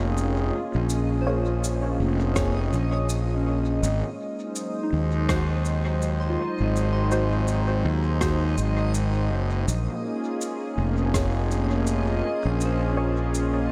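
Ambient dub at 82 BPM in Bb minor with a swung 4/4 feel, this deep, hazy excerpt from a longer piece sets a growly, up-front fuzz bass under a smooth, detuned sawtooth pad with chorus, a reversed granular texture in the background, shaker and rim click carrying dub echo, a gentle warbling FM bell arpeggio with chorus and tape echo from 1.2 seconds, muted filtered dub chord stabs with a phaser, and an overdriven electronic kick that enters at 2.4 seconds and stops at 11.3 seconds, all soaked in a dreamy, cavernous reverb as the harmony moves from Bbm7 to Ab7 and back.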